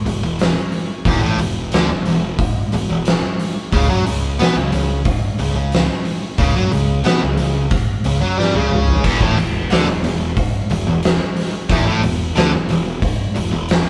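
Recorded as a live band in one room with light reverb, this ominous, heavy stoner and doom metal passage at 90 BPM is driven by an up-front, gritty oversized low-tuned drum kit with a fat snare, punchy kick and bright stone-room character, alongside a compressed, double-tracked fuzz guitar riff and a warm, overdriven picked fuzz bass, moving from a chordless opening to C#sus4 at 3.7 seconds before a drum fill at 8.4 seconds brings in a distorted electric guitar riff, set in the background, on E5 at 9.0 seconds.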